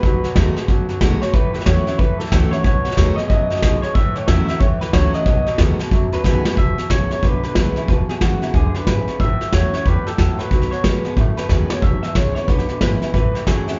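Upbeat and rollicking, this rockabilly piece, cut from a longer track, swings at 183 BPM in 4/4 and settles into E major at 6.6 s. A bright, twangy electric guitar through a small old amp carries the melody, while a second, slightly broken-up, lo-fi electric guitar plays a low fingered riff. Behind them sit a full-bodied jumbo acoustic guitar with audible finger squeak and a woody pizzicato upright bass, while a smooth brush kit up front adds fills at 6.2 s and 11.5 s, all captured as a band playing live in one room with light reverb and a rolled-off top end.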